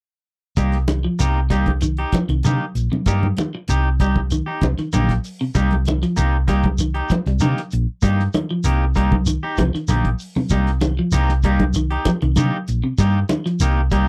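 Intense and hypnotic, this afrobeat piece at 97 BPM in C minor rides a single Cm7 chord, with a clean, twangy electric guitar picking arpeggios, a slightly broken-up second guitar adding bright stabs colored by vibrato, a dark, round hollow-body bass sitting up front, a damped 70s drum kit with a fat snare and tight kick, thin-skinned congas played with soft hands, and a grainy shekere, set in a dry, close 1970s-style studio recording.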